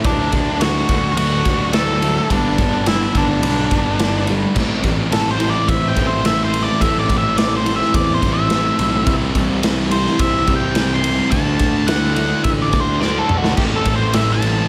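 A very quiet fingerpicked steel-string acoustic guitar opens alongside a thick fuzz guitar riff, a growly overdriven picked bass and a punchy, up-front rock drum kit, while an octave-fuzz lead guitar carries the melody in this dark, cathartic alternative rock piece at 106 BPM in A dorian. A second fuzz guitar riff joins in the background at 4.5 seconds, the lead breaks into a solo at 4.6 seconds over Am, C and Dadd9, and a drum fill arrives at 13.0 seconds. The fuzz guitars carry distortion and slapback echo, and a lush hall reverb lends a big arena sound.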